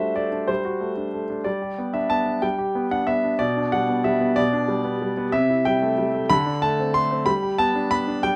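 A concert grand piano plays alone throughout this short excerpt of a classical-period sonatina in G major, elegant and playful in a straight 6/8 at 62 beats per minute, tuned slightly below standard pitch to A4 = 439 Hz. Intimate and up front, with deep bass, long sustain and audible action noise beneath its polished tone, it spans B2 to C6 in light reverb. The harmony moves from a D7 over G through G, G/B and Am7/C to a bare D5 before settling on G at 7.3 seconds.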